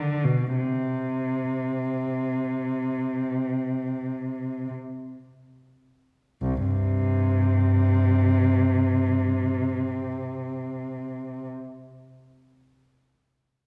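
A lone bowed cello, smooth and up front with vibrato, sings a meditative, mournful classical line in free time between C2 and D3, slowing through its opening 6.4 seconds before moving into a new passage that runs to 11.5 seconds, all bathed in the lingering reverb of a recital hall in this fragment cut from a longer piece.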